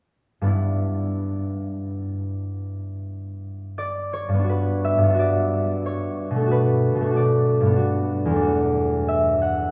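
A lone concert harp opens the recording at 0.4 seconds, set up front and sounding mellow and ringing under a thumb-plucked touch. This is a dreamy, serene classical solo in 3/4, played with rubato so the beats fall unevenly and the pulse seems to drift. The harp ranges from a deep E2 up to F#5, moving from an opening G6 harmony into a second passage at 4.5 seconds built on Gmaj7, Bm7 and a return to Gmaj7 before settling on E9sus4. A long cathedral reverb surrounds the instrument, giving the sense of a church or concert hall. The harp stops at 9.7 seconds, as this short passage is cut from a longer piece.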